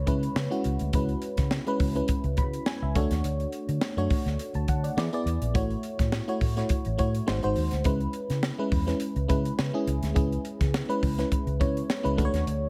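A crisp fusion drum kit with a high-tuned snare and punchy kick lays down a lightly swung 16th-note groove at 104 BPM in 4/4 for this bittersweet, urban 1980s jazz-funk pop excerpt in C# phrygian, alongside a dark, foam-muted vintage fingered electric bass and an up-front, glassy, bell-like FM electric piano with analog chorus, moving through C#m7, Dmaj7, E7, A6 and G#7 in a small room with light reverb.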